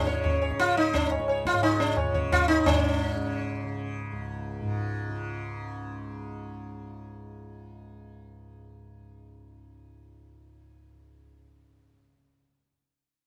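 A straight 4/4 pulse at 175 BPM gathers pace over the first five seconds of this brief, radiant and devotional Hindustani classical passage, cut from a longer piece and tuned to A4 = 439 Hz. The sitar carries the melody between Db4 and Db5, sitting up front with a round, plectrum-plucked tone haloed by its sympathetic strings. Beneath it, a softly plucked tanpura holds a bright, shimmering drone from Db2 to Db3 at a lower level. A low-tuned tabla, recorded close and ringing, joins almost at once and drops out at 2.8 seconds. The sitar stops at 4.0 seconds, leaving the buzzing tanpura drone alone until 12.2 seconds. A moderate small-room reverb gives the acoustic sound an intimate setting.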